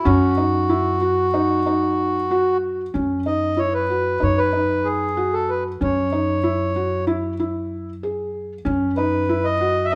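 Set in a church or concert hall with moderate recital-hall reverb, this restless, urgent contemporary chamber piece in 9/8 at 188 BPM places a reedy, close-miked accordion melody up front over soft arpeggios from a felt-muted upright piano with audible action noise and a woody, pizzicato upright bass on F#2, as the harmony moves from F#5 through F#sus2 and C#m/F# to C#m11/F# at 8.7 seconds in this brief cut from a longer work.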